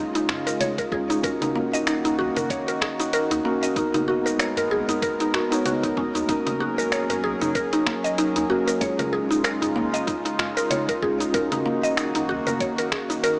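A vast ambient reverb hangs over this short section of organic downtempo, heard through a small-speaker sound that gives it a boxed-in, lo-fi intimacy. Set at 95 BPM in 4/4 in E-flat minor with a light 16th-note swing, the mood is warm and mystical. A mellow tine electric piano comps clean chords, while a warbling, detuned pad of sawtooth and triangle tones sustains beneath it with slow attacks and chorus, both pumping softly against the beat under a shimmering reverb. Up front, a woody, FM-style mallet pluck spins chorused arpeggios through digital delay. From 0.2 seconds a gritty, tape-warm sampler kit brings cabasa, congas, finger snaps and hi-hat, and a thumpy compressed electronic kick follows at 0.8 seconds, with a small acoustic udu tucked far back. A round sine sub bass enters at 0.9 seconds and stays low in the mix, supporting a progression that moves from Db through Ebm7, Abm7/Eb, Gb/Eb and Db/Eb before settling on Ebm7 again.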